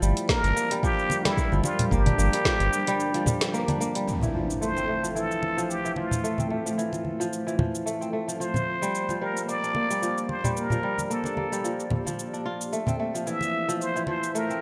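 Bright 1980s-style digital production bathed in lush hall reverb frames this mystical, meditative organic downtempo excerpt at 111 BPM, where a crisp, ringing fingerpicked kora plays arpeggios over a blurred, evolving granular cloud pad moving between Gm7 and Fmaj7; a round sine sub bass and a deep electronic kick sound only through the opening seconds; an afro-pop kit with woody snare, metallic hats and shaker plays alongside close, dry congas; a raspy, growling plunger-muted trumpet solos up front with scooped notes and light vibrato; and an electronic impact arrives at 4.1 s as a filter sweep begins on the kora.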